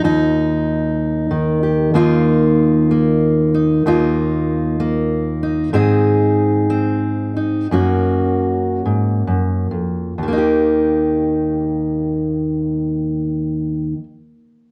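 A light reverb surrounds this short folk passage, cut from a longer piece, in which a solo fingerpicked steel-string dreadnought guitar sounds full-bodied and up front in Eb major, moving in a straight 6/8 at 42-64 BPM in dotted quarters through Eb, Ebsus2, Ab and Gb, slowing down between 5.7 and 10.2 seconds before settling back on Eb in a warm, nostalgic mood.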